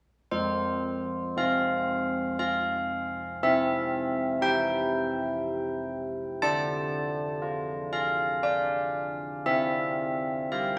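Festive yet serene, this short classical bell tune in a three-beat metre is played by solo carillon bells from 0.3 to 10.8 seconds, moving from F through C and D minor before returning to C. The bells sit up front with a bright, bronze ring, a distinct minor-third overtone and the knock of a worn iron clapper. A moderate church reverb surrounds them, joined by a small-room ambience and a faint mains hum, and the passage is cut from a longer piece.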